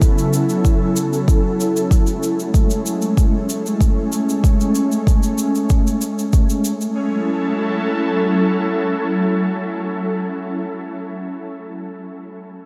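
A deep, tape-warm electronic kick up front, a natural small-room cabasa and an ethereal, warbling detuned pad with ensemble chorus open this smooth, wistful sunset chillout excerpt over drifting F#m7 and Amaj7 chords, all soaked in a huge ambient reverb, until the kick and cabasa fall away near 6.5 and 6.9 seconds and the airy pad sustains alone to 10.2 seconds.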